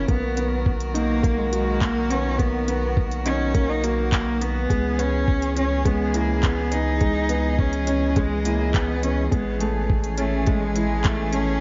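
A straight 4/4 pulse at 104 BPM drives this hopeful, tender piano and strings electronica excerpt in B major, where a muffled, overdriven, thumpy kick and an electronic kit of handclaps and crisp, tape-tinged hi-hats sit under a round, deep analog bass and a woody, bowed string quartet, both pumping with sidechain, as a soft felt-muted upright piano with audible action noise repeats a delayed riff and a rich, smooth cello sings the melody through Bmaj7, C#m7 and Amaj7 in a lightly reverberant, dark-toned mix.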